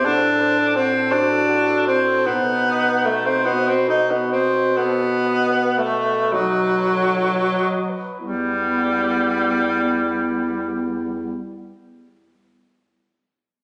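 Captured on a phone in a reverberant concert hall, this yearning, solemn classical fragment for single-reed quartet unfolds in a rubato 12/8 at 30-60 BPM in E minor, slowing through its first 8.2 seconds as a vintage-toned clarinet sings the melody, a clear, distant alto saxophone with vibrato carries a second line in the background, a warm, roomy tenor saxophone with vibrato sits up front in the accompaniment, and a mellow, smooth-topped bass clarinet holds the bass before the harmony settles on E minor at 8.2 seconds.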